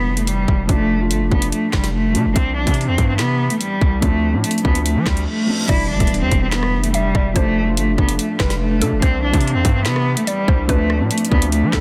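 Drill hip hop in half-time, this short cut from a longer piece sets a menacing, dark mood around a clear, focused solo cello carrying the melody up front, its bowed line marked by vibrato and softened by a low-pass filter and tape echo. Beneath it, a felt-muted upright piano supplies soft, intimate accompaniment, while a distorted 808-style bass hits heavy and saturated, its fast attack decaying under an aggressive noise layer. The drill drum kit enters at 0.2 seconds with a hard-clipped kick, woody snare, metallic hats, rim clicks, handclaps and crash, sounding produced and tape-tinged. Around 5.7 seconds a very quiet reverse cymbal resolves into an impact, and a mallet-like synth pluck joins in the background with a round, warbling vintage tone through chorus and tape echo. A glassy FM pad follows at 6.6 seconds, barely audible and ethereal with a long release, all set in digital ambience and a dense, heavily limited modern master.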